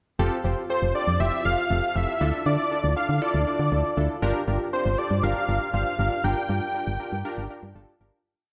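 Detuned, chorused analog keys pulse in close-voiced eighth-note chords over a punchy, dark sequenced FM bass from the start of this cool, driving synth-pop piece, and at 0.7 seconds a thick, nasal, warbling unison lead with vibrato enters with short call-like motifs, all set in a wet concert-hall reverb before fading out from 6.2 seconds.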